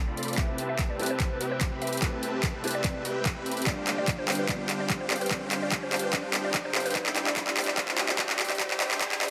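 Future bass in a half-time feel, this dreamy, bittersweet build-up is cut from a longer piece and moves through Am9, G7sus4 and C69 as a filter sweep runs across its whole length. Huge, lush supersaw chords carry the riff, their detuned sawtooth unison and sub octave sounding bright through a low-pass filter and pumping against the sidechain, while an airy, breathy pad holds sustained chords with chorus and a slow attack in the background. A soft, felt-muted upright piano sits behind them as intimate accompaniment, its thin felt and audible action noise giving a mellow, close character, and from 0.4 seconds a woody, round FM pluck plays a warbling, vintage melody through chorus and tape echo. Up front, an overdriven electronic kick knocks, and a layered dubstep kit with handclaps and bright hats plays a drum fill from 0.2 seconds. A very quiet electronic riser enters at 1.7 seconds, and the whole mix sits in a wet digital room reverb with a dense, heavily limited modern master.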